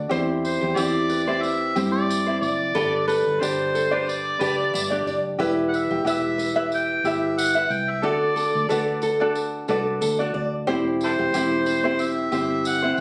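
A lightly swung 16th-note feel at 91 BPM carries this reflective, tender acoustic pop excerpt, where an up-front fingerpicked ukulele and a dark, round, punchy foam-muted vintage electric bass underpin bright, fresh-stringed flamenco guitar arpeggios with audible finger squeak, a jingly close tambourine, and a gritty, overdriven harmonica solo with light vibrato, tongue slaps and plate reverb, moving through C/E, G, Em and D in a moderate studio room captured on a phone.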